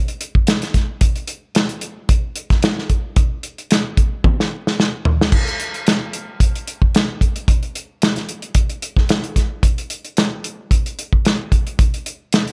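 A soul drum kit carries this rollicking blues excerpt on its own, entering at 0.1 s and playing through to 12.5 s. The acoustic kit sits up front in a small room with light reverb, and its dark cymbals and rolled-off top give it a warm tone. Crash cymbal, hi-hat, a medium-tuned snare, toms and a tight kick make up the set. The groove moves at 111 BPM in 4/4 with a slight sixteenth-note swing that keeps the feel soulful. A drum fill at 4.2 s leads into a repeat of the opening passage.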